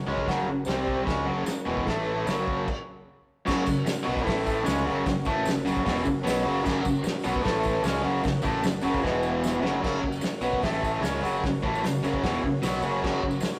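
Garage rock with a raw, swaggering mood, this short excerpt drives along at 150 BPM in a straight 4/4, centred on F# and leaning on power-chord moves to A and E. An overdriven, bright, double-tracked electric guitar sits up front with a picked riff, while a growling fingered bass with its own overdrive rumbles underneath. A reedy vintage combo organ holds sustained chords in the background, its tone shaded by heavy vibrato, and a jingly tambourine sits close and dry behind everything else, entering at 0.6 seconds. The cloth-damped drum kit is thuddy and tight, with dark cymbals, a medium-tuned snare and a rolled-off top. A stop around 2.7 seconds breaks the opening phrase, and a drum fill at 9.0 seconds leads into the final section, all heard in a rough rehearsal-room recording with a moderate stone-room reverb.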